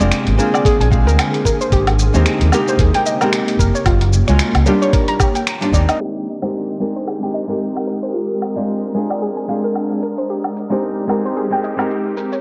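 A woody, fingerpicked nylon-string guitar with tape echo plays from the start of this smooth sunset chillout excerpt at 112 BPM in Ab lydian with a swung 16th feel, together with a shimmering, ethereal ambient pad with chorus and 12-bit sampler grit, a soft round pluck with subtle chorus and tape echo, a dusty sampler-style kit of finger snaps, hi-hat, shaker and woodblock, and a punchy, overdriven fingered electric bass up front; a thumpy, gritty electronic kick enters at 0.7 s, the bass and kick stop near 5.8 s, and a filter sweep on the pluck runs from 6.0 s over jazzy seventh and ninth chords, all bathed in lush hall reverb and the warbly pitch drift of worn cassette tape.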